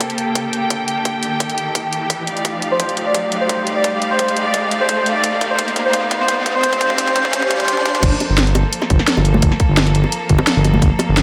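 Liquid drum and bass at 172 BPM in G minor, soulful and dreamy, opening on a build-up: a lush, low-passed string section holds sustained chords moving from Gmadd9 to Ebmaj9#11 over a cracking, up-front drum kit, a tight layered electronic kick in the background and an electronic riser and swell. From 2.7 s an airy, detuned sine lead with chorus, dub echo and a filter sweep floats between C5 and D5 as a drum fill builds. The drop at 8.0 s lands on Gm9 with a smooth, wave-folded sawtooth bass gliding on G1 and soft-handed bongos and congas, the mix sitting in a moderate digital hall ambience.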